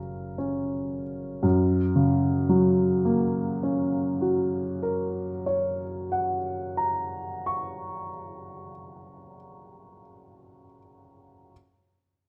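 A warm upright piano opens on an F# major chord, slowing down through the first 1.4 seconds before settling into a tender, dreamy romantic nocturne in a slow, rubato 4/4 at 30 BPM. The solo instrument sounds woody and up front, its long sustain ringing from low F#2 to C#6 within a moderate recital hall reverb captured by close, detailed microphones. This brief passage, cut from a longer piece, moves into a new section at 1.4 seconds, with the piano playing until 11.5 seconds.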